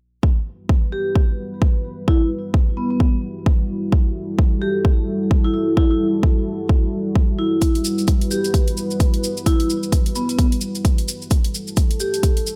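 A swung 130 BPM bass house groove in E minor kicks off with a punchy, up-front electronic kick at 0.2 seconds, soon joined by a deep, detuned analog pad pumping with sidechain and chorus beneath a ringing vibraphone melody carrying slow motor vibrato and digital delay, while an electronic hi-hat and a grainy, close cabasa arrive at 7.6 seconds to fill out this swaggering, gritty cut from a longer piece.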